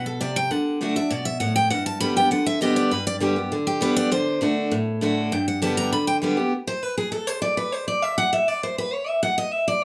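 Lively and virtuosic, this brisk bluegrass snippet in G major moves at 200 BPM in a straight 4/4, cut from a longer piece. Two picked steel-string acoustic guitars sit up front: a full-bodied dreadnought carries the melody from G4 to B5 until 6.2 seconds, while an auditorium-bodied guitar with fresh strings supplies the accompaniment from G2 to F#5 through to 9.8 seconds. Both guitars sound bright, and the studio reverb adds a short, wet room sheen as the harmony shifts between G and D before the chord changes stop at 6.5 seconds.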